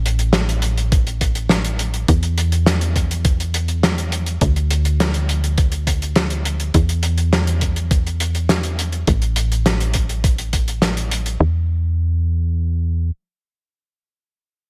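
Synthwave with a nostalgic, moody air, cut from a longer piece, built on a tight, punchy sequencer bass with sawtooth and square-wave tones, ring modulation, tube saturation and sidechain pumping that runs from the start to 13.1 seconds, joined up front by a dry, dark soul kit of hi-hat and fat snare touched with slapback echo and a thumpy, tape-warm electronic kick from 0.9 to 10.6 seconds, before the drums drop out at 11.4 seconds and the bass carries the closing stretch alone in a light reverb.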